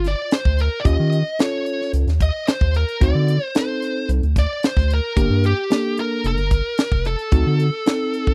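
A biting, overdriven lead guitar carries the melody over a round, deep analog bass and a tight, dry funk drum kit with a high-tuned snare, both up front, while a mellow, clean tine electric piano enters at 0.8 s in this smoky, mournful straight-eighth soul blues at 111 BPM in G minor, moving from Gm through Eb7 and D7b9 in a close, dry 1970s-style studio sound.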